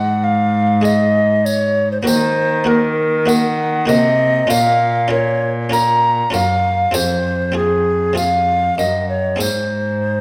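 Solemn and rustic, this brief excerpt from a longer piece is a renaissance-style consort dance in Eb dorian, moving at a straight 98 BPM in 4/4. A hollow, airy tenor recorder carries the melody up front, its wooden tone shaded with vibrato and a tongued chiff at the start of notes. Beneath it, a buff-stop harpsichord supplies muted, lute-like plucked accompaniment with a dry Italian-style character, while a single bowed cello plays the bass line with a nasal, reedy gut-string tone in period style. A jingly tambourine, set distant as if in a large room, joins at 0.9 seconds and drops out at 9.7 seconds. The harmony passes from Ab through Ebm, Bbm and Fm before returning to Ab, and a recital hall reverb with a 1.6-second decay gives the ensemble a wet, resonant setting.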